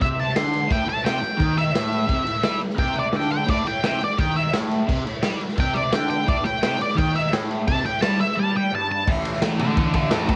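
This gritty, menacing garage rock excerpt opens with all three parts at once: an octave-fuzz lead guitar soloing in a dark, distorted voice between A4 and C6, a raw overdriven rhythm guitar picking a low riff from G2 to A3, and a raw acoustic drum kit. The tempo is a driving 172 BPM in straight 4/4, set in A minor over an Am chord. The riff guitar is double-tracked and treated with phaser and cassette tape saturation, giving it a thick, analog grain. The drums sit up front with a punchy kick, a medium-tuned snare, crash and ride cymbals, and a saturated, rolled-off top that sounds like a bright stone room pressed onto tape. The lead solo runs until 9.1 seconds, when the harmony shifts to an A5 power chord for the closing stretch to 10.4 seconds. The whole thing has the close, dry feel of a home cassette recording with little reverb.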